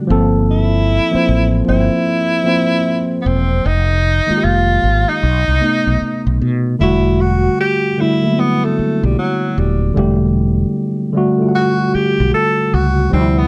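Soulful and sultry, this slow R&B passage at 76 BPM in 4/4 swings its sixteenths over minor-eleventh harmony and settles into E minor at 6.8 s. A worn, slightly out-of-tune tine electric piano comps up front while a round, dark fretless bass anchors the low end. A warm, subtoned tenor saxophone with vibrato and a slapback echo carries the jazz-inflected melody, then takes a solo from 6.8 s, all in a small room with light reverb.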